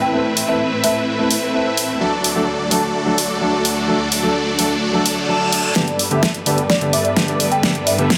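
Opening on a woody, soft-mallet folk marimba melody over a warm grand piano, pumping studio strings and a bright, detuned supersaw riff with phaser, this uplifting, anthemic festival progressive house excerpt in G major at 128 BPM moves from Amadd9 to D as an up-front big-room kit with a huge snare drives it, then a very quiet reverse cymbal at 5.1 seconds leads into a build-up at 5.8 seconds where a thick unison lead arpeggio, a punchy electronic kick in the background, a drum fill and filter sweeps on the lead and strings arrive over Gadd9.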